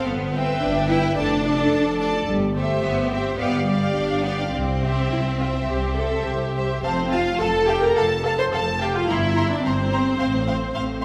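A quick, spirited classical-period movement for string orchestra, this cheerful passage at 108 BPM in 4/4 is cut from a longer piece, moving from C major into F major at 6.8 s. A clear, distant first violin section carries the melody high above, its vibrato intense, while a warm second violin section with a focused, smooth top adds a second line in the same register. Beneath them the violas fill out the accompaniment with an intense, lush body, and the cellos supply a close, focused bass line. The double basses enter at 0.1 s, even and up front, anchoring the lowest notes. The strings sit in a reverberant recital-hall space with a long, wet tail, giving the ensemble a churchlike bloom around the bright, buoyant harmony.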